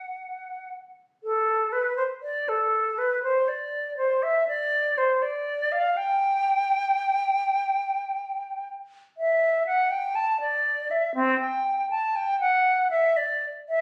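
Flowing in a free, rubato 4/4, this serene yet dance-like baroque-style classical fantasia, cut from a longer piece, features an unaccompanied silver concert flute playing alone for the full 13.8 seconds between C4 and A5, its pure, metallic tone carrying vibrato and soft attacks up front in a moderate, large studio reverb, captured on a phone in the room.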